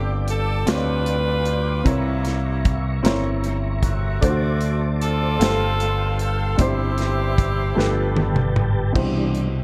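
This short cut from a longer slow gospel piece opens with an edgy, tight saxophone section carrying the melody in a soulful, jubilant mood, bathed in dub echo. Beneath it, a clear upright piano with woody tone and audible action noise plays accompaniment, while a tonewheel organ with key click holds sustained chords through a slow rotary speaker and chorus vibrato. A punchy fingered electric bass sits up front, and a modern studio drum kit with a dark, rolled-off top, tight kick and medium-tuned snare enters at 0.3 seconds. The music moves at 51 BPM counted in dotted quarters in a straight 6/8, in C major, with chords shifting from G7sus4 through C7b9, D7 and G9sus4 toward a closing Cmaj7. A drum fill runs from 7.8 to 9.0 seconds as the saxophones finish, and the whole mix has an echo-heavy sound with light reverb and small room ambience.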